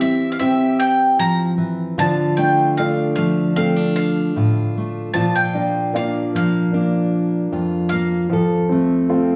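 A bright, picked bowl-back mandolin takes the solo with its doubled strings up front, carrying a hopeful, peaceful second line over this 9.4-second excerpt of acoustic folk at 76 BPM in a straight 4/4. Beneath it, a fingerpicked steel-string acoustic guitar gives warm accompaniment with audible finger squeaks, while a clear, woody upright piano plays intimate arpeggios with its action noise audible. The trio sits in a large, wet studio reverb heard from further back in the room as the chords move from C/E to Dm, then Bb at 5.1 seconds and F at 8.3 seconds.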